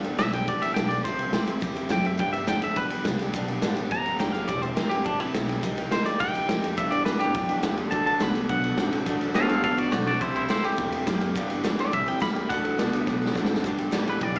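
A twangy, scooped electric guitar leads up front, playing a clean picked solo through tremolo, slapback and tape echo in this rollicking, upbeat rockabilly excerpt at 210 BPM in G major. Behind it a bright dreadnought acoustic guitar is picked with slapback echo, a woody, thumpy gut-string upright bass is plucked, and a gritty, saturated garage drum kit with punchy kick, snare and ride drives things along, with a drum fill at 13.1 seconds. A slightly broken-up, lo-fi electric guitar riff through a small old amp joins in the background at 6.8 seconds, and the whole sounds like a live club gig heard through the venue's PA and small speakers, moving through G, C, Cm7 and D.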